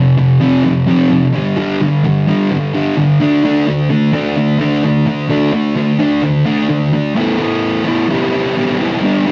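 Angsty, brooding rock at 129 BPM in 4/4, cut from a longer piece, where a thick, up-front, double-tracked fuzz guitar plays alone, picking distorted power chords F5, G5 and D5 over a half-time feel until 7.2 seconds, then moves to a new section of Asus2 and Em/G, all in a rough rehearsal-room recording with a wet studio reverb.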